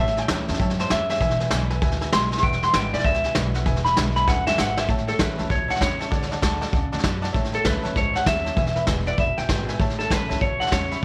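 A brisk 196 BPM swing in 4/4 drives this rollicking, upbeat rockabilly cut in A major, with brushes on a punchy, up-front vintage kit marking a drum fill from 4.3 to 4.9 seconds before the chords move to D at 6.1 seconds. A twangy, slightly broken-up electric guitar with tape echo carries the lo-fi melody, while a jangly, metallic tack piano and a full-bodied picked acoustic guitar fill in behind it. A woody, thumpy upright bass sits in the background, all under a light reverb.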